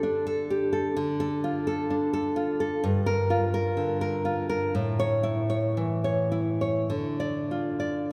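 A bright, fingerpicked nylon-string guitar sits up front and plays alone through this intimate, passionate romantic classical fragment, cut from a longer piece, moving with free rubato in 4/4 from Dsus4 to Dm, then through Gm7 and A before settling back on Dm at 6.9 seconds, its notes hanging in a wet church reverb with a 3.9-second decay.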